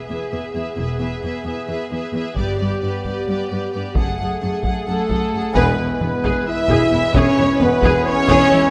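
Epic orchestral film score in a triumphant, majestic mood and an asymmetric 7/8, where a distant studio violin section carries the melody over a second violin line, clear violas, mellow French horn chords and lush close cellos with background double basses, before hard-stick taiko drums enter at 2.4 s, mellow vintage trumpet stabs arrive at 4.9 s, very quiet bright trombones and dark roomy woodwinds come in at 5.5 s, and a band accent at 5.6 s brings in a soft tuba beneath the scoring stage reverb.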